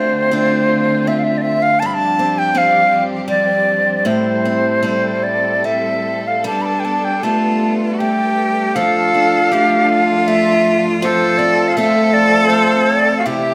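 A reedy wooden flute leads the passage, close and up front with an airy, tongued tone and vibrato, singing a nostalgic, tender Celtic slow air over a picked steel-string acoustic guitar. The guitar has a boxy parlour character and sits forward in the mix, while a lush symphonic string section holds sustained bowed chords further back, focused yet rich. The music moves in a rubato 3/4 around 80 BPM in G mixolydian, drifting through chords such as Dm7, G7sus4, Am7 and Gadd9 before settling on F. At 6.5 seconds a single cello joins with a second line, its bowing intense and biting, with a nasal edge and close presence. A moderate recital hall reverb wraps the ensemble, and the passage is cut from a longer piece, ending at 13.5 seconds.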